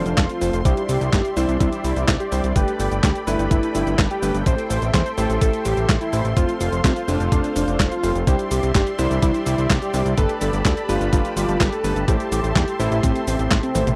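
A straight 4/4 groove at 126 BPM drives this melodramatic, danceable italo disco piece in A minor, where a thumpy electronic kick and a clean 12-bit drum machine of cabasa, handclaps, hi-hat, snare and toms, both tape-toned and re-recorded in a large room, support an up-front, tube-saturated sawtooth bass with a filter sweep, a smooth, chorused pad holding the F, Cadd9, Gadd9 and Am7 chords, background grand piano stabs with tape echo, and a bold, gritty unison lead melody with vibrato and tape echo, all in a dry, close 1970s-style studio sound, until a drum fill at 13.7 seconds closes the excerpt.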